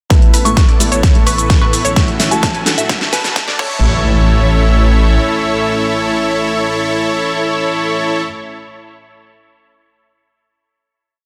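This short festival progressive house piece has a dense, heavily limited modern sound with light reverb, and it moves in an anthemic, euphoric mood at 129 BPM in A major. It opens as a build, with a punchy, tape-warm electronic kick driving a four-on-the-floor pulse up front while a big-room kit adds a huge snare, programmed hats, cabasa and crash through a drum fill, and a filter sweep opens the thick, compressed supersaw riff of dotted-rhythm chords. Beneath it a detuned saw bass, saturated and chorused, follows the chord rhythm, and a lush, slow-attack pad holds sustained chords, all of these parts pumping with sidechain. In the background a dark, intimate baby grand piano with audible action noise plays dotted-rhythm chords, a bright unison pluck doubles the chords in arpeggios, and a soft, pure FM bell with chorus and phaser offers short answering phrases from 0.5 to 3.5 seconds. The drums drop out at 3.7 seconds as the final hit arrives at 3.8, and the bass stops at 5.2 seconds. 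A very quiet riser and impact, sounding from 2.6 seconds, accompany the sustained synths, piano and pluck to the close, with dub echo trailing the supersaw, piano and pluck. The harmony moves from Asus2 through F#m7/A and D back to A.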